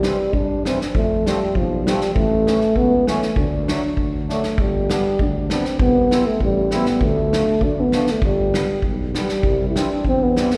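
Alpine folk for a dance band, jolly and bouncy in a straight two-beat feel, with a mellow euphonium carrying the melody up front, its light vibrato and soft attack shaped in a classical style. Behind it a reedy, dark accordion fills in the harmony with a slow-beating shimmer, a smooth-topped tuba holds down the bass, and a natural acoustic kit with a punchy kick and medium-tuned snare drives things along, dropping a short fill at 4.3 seconds. Slapback echo touches the euphonium and accordion, and the whole short cut sounds like a live gig heard through the venue's PA in a recital hall.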